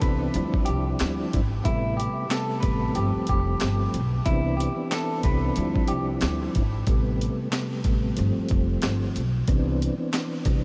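A swung sixteenth-note groove in 4/4 drives this moody, reflective boom-bap hip-hop piece, cut from a longer track, with a gritty, compressed sampler-style kit up front: a thumpy kick, a high-tuned snare, handclaps and hi-hat. Beneath it, a woody, growly pizzicato upright bass with steel strings holds the low end throughout. A soft, flute-like tonewheel organ sits prominently in the mix, its clean tone shimmering with chorus vibrato, key click and a slow rotary speaker as it carries the harmony through a cycle of Dm11, Am9, G9sus4 and Cmaj9. A slightly broken-up electric guitar plays a picked, compressed melody bathed in spring reverb and a diffuse ambient delay, falling silent at 6.1 seconds while the rest of the band continues. The whole mix is dreamy and soaked in a huge ambient reverb, with vinyl crackle adding a dusty, nostalgic haze.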